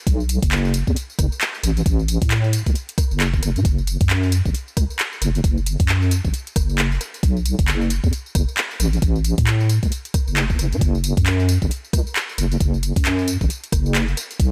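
Moody and skippy, this brief cut from a longer two-step UK garage track runs at 134 BPM in F# minor with a 60% swing on the sixteenths, pairing an up-front, dark, wobbling square-and-sine bass, detuned and compressed with chorus and tube saturation, against an overdriven knocking electronic kick and a quieter overdriven garage kit of handclaps, metallic hi-hats, rim clicks and tambourine, all playing from 0.1 to 14.5 seconds in a digital ambience.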